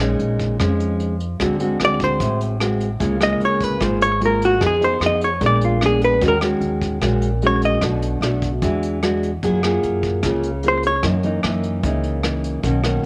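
A nylon-string guitar and pizzicato upright bass open this relaxed, romantic bossa nova excerpt at 150 BPM, joined at 0.2 seconds by a muffled, lo-fi brush kit of hi-hat, punchy kick and rim click, while a dark, clean hollow-body jazz guitar with slapback echo carries the up-front melody from 1.8 to 7.8 seconds, returning briefly at 10.7 seconds, over thumb-plucked classical chords and a woody, growly bass, moving through Bbm7, D7#11 and Ebm7 to settle on Gbmaj9 and Gb6 in a small, lightly reverberant room.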